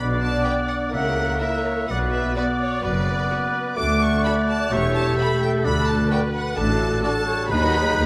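A focused, vibrato-rich violin section carries the melody of this spirited, cheerful classical-period movement for symphony orchestra, cut from a longer piece and moving quickly in four with a rubato feel. Around it, a clear oboe, a mellow, hollow concert flute sitting distant and high, and a soft-attacked clarinet in the background each add a second line. A second violin section, expressive and close yet set back in the mix, joins with its own line from 0.5 seconds. A smooth, even viola section supplies the accompaniment, while a dark, roomy French horn section holds sustained chords from a distance. Underneath, a bowed double bass section and a lush, distant cello section form the bass, and the whole passage sits in a wet recital hall reverb as the harmony moves from minor chords toward a brighter major close.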